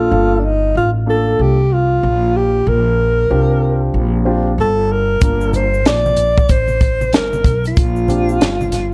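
Jazz-hop with a nocturnal, smoky mood and a swung feel, this short cut from a longer piece opens on a breathy, close-miked alto saxophone carrying the melody with vibrato and subtone. Beneath it sit a mellow, smooth baby grand piano with long sustain and a woody, thumpy pizzicato upright bass on gut strings, moving between Gm9 and Bb69. At 5.2 seconds a compact cocktail drum kit arrives up front with a punchy kick, high-tuned snare and hi-hat roughened by vintage 12-bit sampler grit, joined by bright, compressed egg shaker and congas in the background; the piano stops at 8.5 seconds, and light reverb with small-room ambience rounds out the dark, warm production.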